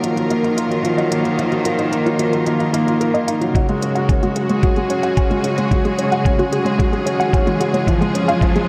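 Piano and strings electronica at 111 BPM, this intimate, moving build-up sets a soft, felt-muted upright piano riff with delay up front over lush, vibrato-rich bowed string chords that pump with sidechain, while a warbling, lo-fi pluck arpeggio with chorus, delay and a filter sweep sits in the background, smooth overdriven electronic hi-hats run throughout, a muffled, thumpy kick enters at 3.5 s, and a very quiet riser joins at 6.4 s, inside a huge ambient reverb and dark production.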